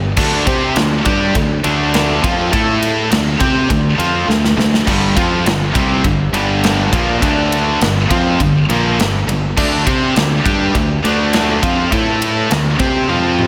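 This hard rock cut sits in a big arena sound, with a lush hall reverb giving the whole mix a spacious, roomy tail. At 102 BPM in a straight 4/4, it feels energetic and anthemic, with riffs built on D5, A5 and G5 power chords. Three picked electric guitars play the riff together from the start, kept in the background: one crunchy and overdriven, one distorted with overdrive and slapback echo, and a heavy, double-tracked high-gain guitar that also carries slapback echo. A growly, punchy fingered electric bass, heard both direct and amped, anchors the low end. The acoustic drum kit comes in at 0.2 seconds and sits up front, with a punchy kick, medium-tuned snare, toms, and bright crash and ride cymbals, adding fills around 4.3 and 13.1 seconds.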